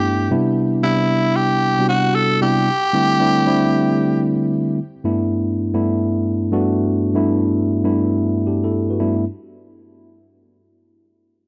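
A growling, raspy tenor saxophone with light vibrato and a slapback echo opens this flirty, upbeat R&B excerpt with a short, edgy solo melody up front until 4.2 seconds, over a clean, direct tine electric piano that carries the Cmaj7, D7sus4 and G69 chords until 9.2 seconds in a dry, close 1970s-style studio sound with a lilting sixteenth-note swing.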